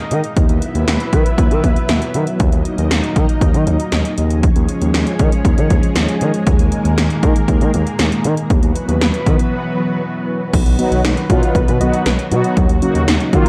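A straight 4/4 pulse from punchy, gated 80s electronic drums drives this cool synth-pop excerpt, with a gliding sawtooth synth bass and up-front vintage string-machine cellos holding slow-attack, ensemble-chorused chords, until a break at 9.5 seconds gives way at 10.5 seconds to a soft, delayed pluck arpeggio in the background, joined at 10.8 seconds by mellow, phased synth brass, the whole set in light digital reverb and a dark production.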